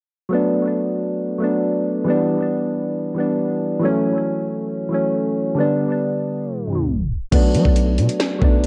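A half-time trap pulse frames this brooding, menacing hip hop cut, which opens on soft, round electric-piano-like synth keys treated with chorus and a cassette-tape tint, moving through Bm7, Em7, F#m7 and G in a light reverb. A tape stop drags the keys down from 6.4 to 7.3 seconds, and then the up-front trap kit crashes in with a knocking kick, sharp snare and metallic hats. Beneath it sits a deep, sine-like 808 bass with long decaying notes, kept in the background.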